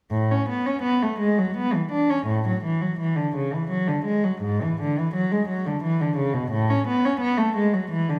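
Beats stretch and relax in an unhurried triple metre, the pulse bending freely with rubato in the manner of a baroque-style suite movement for unaccompanied cello. A single bowed cello plays the whole passage, from 0.1 to 8.2 seconds, ranging from G#2 up to D4. Its gut-string, period-style tone is dark and reedy, with a nasal edge and light vibrato. The player sits up front, while a wet recital-hall reverb with a 1.5-second decay surrounds the line. The mood is flowing and serene, and the passage is cut from a longer classical piece.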